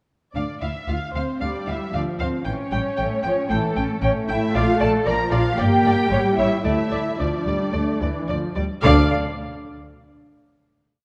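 A quick, urgent and stormy classical-period movement for muted string orchestra in D minor at 114 BPM, where a veiled con sordino violin section plays repeated notes on the melody, a lush second violin section doubles the tune at the octave, the cellos carry their own bowed line, the up-front double basses sustain repeated bass notes, and a close viola section enters at 1.4 s with a counter-melody, all set in a dark, warm production with wet concert-hall reverb that closes on a final chord at 8.8 s.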